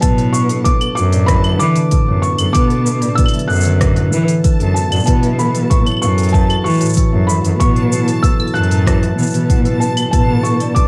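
A felt-muted upright piano carries a soft, mellow melody over ringing fingerpicked harp arpeggios, a sweet, slightly out-of-tune celesta line and a dark, bowed cello bass with expressive vibrato and portamento, all opening this delicate, autumnal folktronica excerpt in B minor at 95 BPM. A deep, up-front electronic kick and a crisp, low-pass-filtered kit of claves, hi-hat, rim click and shaker set a straight 4/4 pulse, while a warbling, lo-fi tape-like pad joins at 0.6 seconds with nostalgic sustained chords and a reversed, dreamy texture hovers faintly in the background. Digital delay trails the piano, celesta and harp as the harmony moves between Bm7 and F#m7 in a dark, warm mix with light small-room ambience.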